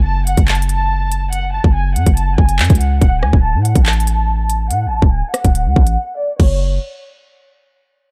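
A half-time drill groove from an up-front electronic kit, with its hard-clipped kick, crisp hi-hat, rim click, handclaps and crash cymbal, drives this tense, dark hip hop fragment, as a punchy, heavy 808-style bass with a fast-attack, decaying sine tone and noise layer sits up front beneath a soft-attacked, floating violin section bowed sul tasto through a low-pass filter sweep and tape echo, all in a dry, dark studio production that pauses for a brief break at 6.0 seconds.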